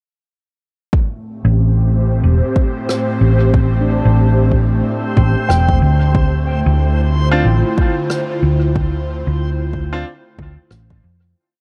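A round, punchy hollow-body electric bass plays a dub-style line up front in this meditative, deep ambient dub piece in A minor at 92 BPM with swung sixteenths, set over a soft, overdriven electronic kick. Around them sit a sparse, echoing rim click, an airy, breathy pad with chorus and 12-bit sampler grit holding slowly shifting chords from Am7 to Dm7, a reversed, dreamy swelling texture on a held high note, and a ringing handpan drifting in two unequal loops in the background from 3.8 to 8.1 s. Woody, brilliant upright piano stabs with dub echo arrive at 7.3 s, all within a dark production that fades out from 7.9 s.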